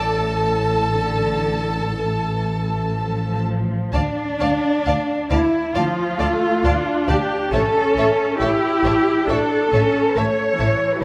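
An up-front, expressive cello section carries the bass of this elegiac, melancholic slow movement for chamber string orchestra, with a soft-attacked double bass section beneath it, both bowed with vibrato. A close, rich first violin section sings the melody above a focused second violin line, while a smooth, even viola section supplies distant accompaniment. The rubato phrasing unfolds in a moderate concert hall reverb, a mournful passage cut from a longer piece.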